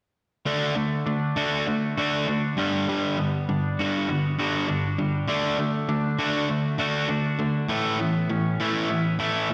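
Anthemic and bittersweet, this rock excerpt moves at 100 BPM in a straight 4/4 in D major, passing through D, Gmaj7 and Aadd9. A bright, overdriven semi-hollow guitar plays a picked riff up front, while a clean, twangy electric guitar adds arpeggios further back, touched with subtle chorus and slapback echo, both parts playing from 0.5 to 9.5 seconds. A lush hall reverb gives the whole a big arena sound.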